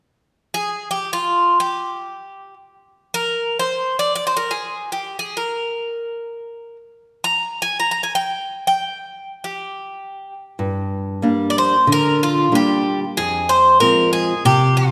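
Brooding and moody, this Greek folk excerpt opens with a bright, metallic bouzouki playing the melody alone from 0.5 seconds, its picked double strings and occasional octave-doubled courses sitting up front. At 10.6 seconds a small, fingerpicked nylon-string guitar enters with warm accompaniment as the harmony settles on G minor and then shifts to F minor, with both instruments carrying on to the close at 14.9 seconds. A moderate scoring-stage reverb gives the pair a sense of space.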